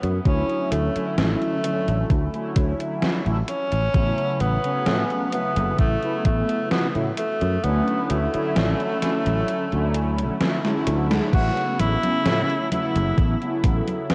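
A slow, straight 65 BPM pulse in 4/4 comes from a thumpy, overdriven electronic kick and a gritty 80s drum machine with gated-reverb snare, hi-hat, crash and congas, while a growly, up-front fretless bass with analog chorus sustains beneath; the kick drops out from 7.6 to 11.3 seconds, as a drum fill and band accent lead into a new section at 11.3 seconds. This dreamy, woozy vaporwave fragment in A major drifts between Dmaj7 and A69 chords, with round, detuned sawtooth synth brass treated with phaser, lush chorus and ambient delay, and a tenor saxophone with classical-style vibrato carrying the melody through tape echo. The cassette-tinged mix is soaked in plate reverb, and the passage is cut from a longer piece.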